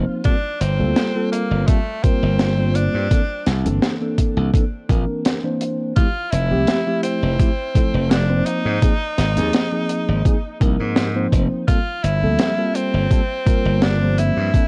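A dry, gritty cassette-tape sound frames this dreamy, faded vaporwave excerpt, in which a mellow tine electric piano with subtle chorus and vintage 12-bit sampler texture plays the chords over a glassy, punchy slap bass with tube saturation, a thumpy, up-front electronic kick and a dark, smooth reggae kit of hi-hat and high-tuned snare, while a forceful, edgy tenor saxophone carries the melody with vibrato, scooped notes and tape echo, and a short break arrives at 5.3 seconds.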